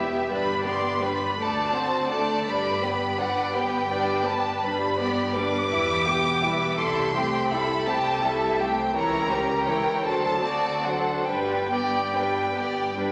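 A wet scoring-stage reverb surrounds this string orchestra, giving the bowed sections a spacious halo. It is a slow, melancholic and elegiac romantic movement in a lilting 6/8 with free rubato, cut from a longer work. The first violins carry the melody up front, their tone rich, close and expressive with vibrato, while the second violins trace a clear, focused and distant second line that also sits up front. Beneath them the violas fill in a smooth-topped accompaniment. The cellos and double basses anchor the bass in the background, the cellos even and distant, the basses bright. The harmony moves from G through D7 and Em to a darkening C#dim7 at 8.9 seconds before settling on D7 and returning to G at 11.3 seconds.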